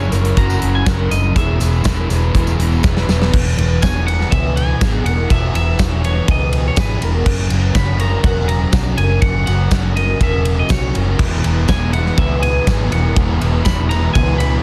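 A bright, twangy electric guitar carries the melody across this hazy, wistful slice of shoegaze-tinged dream pop rock, its clean picked line set off by a slapback echo. Beneath it, a shimmering, octave-doubled twelve-string acoustic guitar fingerpicks arpeggios in the background, drenched in lush chorus and its own slapback echo, while a compressed fuzz guitar grinds out a low riff through distortion and ensemble chorus. An overdriven semi-hollow guitar adds a second riff with reverse reverb, playing until 3.3 seconds and returning at 11.2 seconds. A round, foam-muted vintage bass anchors the low end with a dark, amped tone, and a big acoustic drum kit sits up front with a punchy kick, a medium-tuned snare and a smooth, rolled-off top, firing a fill just before the shift at 3.3 seconds. A jingly, band-limited tambourine rattles softly in the background over a small room ambience, the whole cut, which is taken from a longer piece, pressed into a dense, heavily limited modern master as the harmony moves between F#7 and E.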